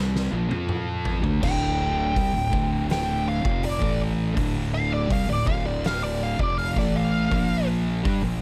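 Up front, a fuzz lead guitar with wah and analog delay takes a solo from 1.4 s, following an opening drum fill on an oversized, low-tuned kit with a boomy kick, fat snare, dark cymbals and a gritty, saturated edge. Beneath it, two thick fuzz guitars churn out a distorted riff in the background while an overdriven fingered electric bass adds a round low end. A small room ambience frames this sludgy, heavy stoner and doom metal excerpt.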